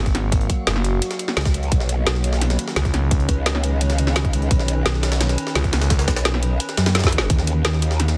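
A straight four-beat drum and bass groove drives this short cut from a dark technical drum and bass track, which sits in a drop that closes with a drum fill at 7.0 seconds. Up front, a layered drum and bass kit pairs a woody snare with metallic hats over a tight electronic kick. Behind it, a gritty, pitched-up jungle sampler-style kit with a high-tuned snare has its hats, snare and room thinned by high-pass filtering. A thick FM bass holds the low end at the start and returns briefly, and from 1.4 seconds a saturated, wobbling growl bass with a formant filter, chorus and overdrive joins in. In the background, an eerie, warbling inharmonic drone sustains chords with chorus, reverb and sidechain pumping, moving from Gbadd9 to Badd9 before landing on Ebm. The dense, heavily limited mix feels futuristic and aggressive.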